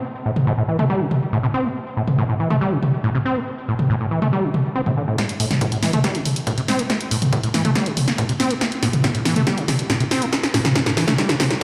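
A huge ambient reverb fills this dark, relentless excerpt of driving peak-time techno, which sounds as if it were played on a big sound system in a bare room. It moves at 140 BPM in a straight 4/4, in A minor and tuned to A4 = 441 Hz. An overdriven acid bass sits up front from 0.3 seconds, playing a squelchy, gritty sawtooth riff between A2 and C4, with a fast attack, a resonant edge, sidechain pumping and delay. A punchy analog drum machine joins almost at once with hi-hat, snare and toms, re-recorded in a large room, with the hats and toms pumping against the sidechain. At 5.2 seconds a layered electronic kick drum, high-pass filtered and set in the background, arrives as the track turns into a build-up. Through that build-up the drums play a fill while a filter sweep runs over the saturated acid bass until the cut at 11.6 seconds.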